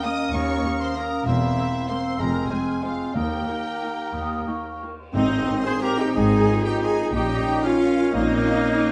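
A clear, focused violin section carries the melody of this elegant, festive orchestral ballroom waltz in Ab major, moving in a rubato 3/4 at 168-208 BPM. A second, rich and smooth violin section, an airy flute ensemble with a hollow tone, a solo clarinet and a distant cor anglais weave second lines beneath it, while an expressive viola section with portamento and a solo bassoon supply accompaniment, the bassoon dropping out at 5.0 seconds. Bowed cellos and double basses with an intense edge anchor the bass, and a very quiet, dark French horn section holds sustained chords. From 3.2 seconds, timpani struck with hard mallets and a very quiet cymbal swell with tam-tam add festive colour. At 5.1 seconds the music turns to a new section with a band accent, as a bright trumpet section enters with stabs and a clear trombone section adds sustained chords. A wet stone-room reverb gives the whole a dark, warm production in this short cut from a longer piece.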